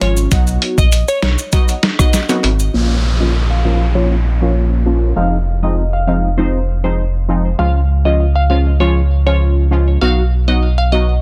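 A tough, sultry dancehall excerpt opens with a glassy wavetable pluck melody over punchy, detuned synth brass stabs with phaser and sidechain pumping, a deep sub bass with octave, and a muffled, gritty lo-fi sampler-style drum kit with thumpy kick, joined by acoustic maracas and timbales, until the drums and percussion drop out near 2.7 s, when an electronic downlifter runs to 7.6 s and a filter sweep carries the dry, dense, heavily limited mix through chords moving from Bbm to Fm7 and Db.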